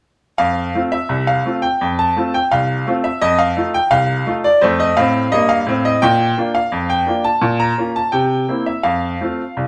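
A bright, woody upright piano plays alone from 0.4 s, carrying a playful, cheerful ragtime strain in a straight two-beat metre across a span from deep bass to high treble. Its harmony moves from F to F7 and Bb, turns to Bb minor at 7.4 s, then passes through C7 to a Dm chord at 8.8 s. Up front and with long sustain, the piano sits in a wet studio reverb in this short fragment cut from a longer piece.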